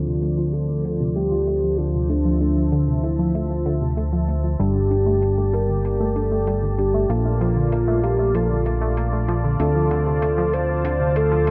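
Moody and driving, this synthwave excerpt glides over a Dm7, Gsus2, Bbmaj7 progression, led by a soft, round octave-layered synth melody with vibrato, phaser, delay and a cassette-tape tint, above a lush, detuned unison pad and a fat, saturated analog bass up front. In the background, a bright wave-folded analog pluck runs arpeggios under a filter sweep and tape echo, a clean tine electric piano adds low-passed stabs, and an electronic hi-hat with a sampler-style, large-room character enters at 0.2 seconds. Light reverb and digital ambience wrap the whole mix under a low-pass filter.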